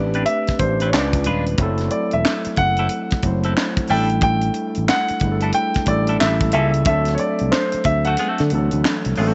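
A sultry, late-night neo-soul and R&B excerpt at 91 BPM, swung on the 16ths, opens on a short-sustained baby grand piano melody touched with tape echo over a barky, gritty tine electric piano and an up-front fingered electric bass, joined at 0.1 seconds by a compressed, clean picked guitar through a phaser and a tight funk kit with a high-tuned snare, hi-hat and handclaps, moving from Am11 through C#7b9 and A7b9 to D7 in a small, lightly reverberant room, with the kick dropping out at 8.2 seconds.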